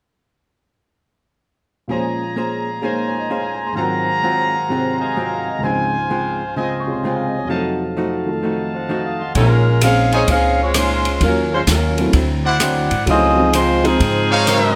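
A mellow saxophone section carries the melody in this dramatic, brassy big band swing passage cut from a longer piece, sounding roomy with a light vibrato yet sitting up front. The opening, from 1.9 seconds, belongs to a tight, bright trumpet section punching out stabs over an intimate concert grand piano, whose deep bass and audible action noise come through, and a clean, compressed hollow-body archtop guitar, both comping. The harmony moves through rich minor ninth, thirteenth and altered dominant chords before settling on a major ninth. The drum kit enters at 9.3 seconds, with its dark cymbals, boomy kick and airy, polished small-room sound. The saxophones and a woody, thumpy gut-string upright bass join at 9.4 seconds, lifting the ensemble into a fuller swing. A moderate large studio reverb gives the whole band a natural sense of space.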